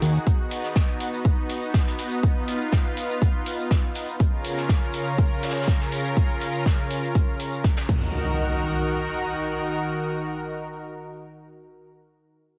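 Heavily compressed into a radio-like sound with light studio reverb, this driving, cinematic melodic techno excerpt sets a lush, warbling, detuned sawtooth pad with chorus and sidechain pumping over a punchy, up-front electronic kick, pumping metallic house hats and crash, a distant, roomy brushed kit of hi-hat and snare, and a grainy shaker tucked in the background, until the percussion drops away around 8.0 s and an electronic impact sounds alongside the sustained pad through 11.9 s.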